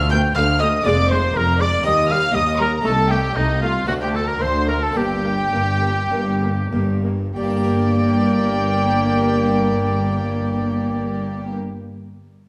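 A stormy, dramatic baroque-style concerto movement in G minor opens with a violin section carrying the melody high above a round, airy harpsichord in the background and rich, gut-string cello and double bass sections anchoring the bass. A clear, up-front solo oboe with light vibrato joins at 0.1 s alongside a second violin line and a viola section, both bowed in period style with light vibrato and a reedy, gut-string tone. Moving in 4/4 between 93 and 121 BPM, the music slows from 1.8 to 7.4 s as the harmony passes from D minor through E-flat to G minor, all bathed in a wet recital-hall reverb.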